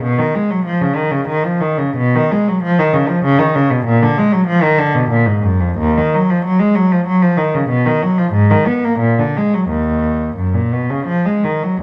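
A lone bowed cello carries this short passage from a longer baroque-style suite movement, its gut-string tone nasal and reedy in a period style. The mood is flowing and solemn, moving in 3/4 with a rubato feel that lets the pulse drift between 79 and 98 BPM. In E-flat minor, the single player ranges from a deep Eb2 up to Cb4 across the full 11.8 seconds. The instrument sits up front yet keeps a slightly distant quality, framed by a moderate recital hall reverb of about 1.4 seconds. The production leans dark and warm, suiting the music's solemn character.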